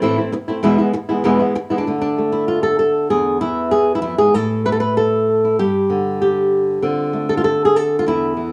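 A home cassette recording with a small-room ambience and light reverb frames this short fiery, mournful fragment of flamenco, cut from a longer piece and moving at a brisk 194 BPM in straight 4/4. A lone fingerpicked acoustic flamenco guitar sits up front, ranging from E2 to B4 as it opens on Am and E before shifting at 1.9 seconds into a passage that moves through D5, E7, A5 and G5 to close on Dm7.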